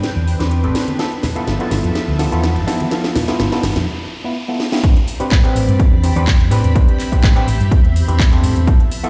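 This nostalgic, sensual filtered disco house excerpt at 125 BPM in A minor opens with lush, bright string machine chords, a layered, overdriven house drum kit with cracking snare, metallic hats, handclaps and shaker, and ringing tube shaker and congas. Almost at once, a dark, round fingered electric bass and a barky, gritty reed electric piano through a combo amp join them, while a filter sweep, drum fills and a background riser build over the Am11 to G13 changes. The tube shaker and congas stop at 3.9 seconds for a short break. Then at 4.8 seconds a punchy, tape-warm electronic kick lands up front for the drop back on Am11, with sidechain pumping on the strings, bass, piano and kit in a big, reverberant room.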